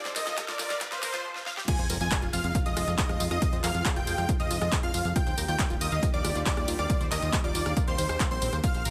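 Bathed in light reverb and digital ambience, this emotional, bittersweet uplifting trance excerpt at 138 BPM in F dorian opens on a build-up of drum fills, a riser and a lush, chorused unison pad beneath a thick, compressed supersaw lead with digital delay, joined early by a punchy kick from a large room, a layered dance kit with a huge snare and metallic hats, and a tight, driving arpeggio synth with dub echo, before the drop at 1.7 seconds brings an impact, an airy, evolving supersaw stab and a plucky, funky analog bass, with the lead, pad, arpeggio, stab and bass all carrying sidechain pumping.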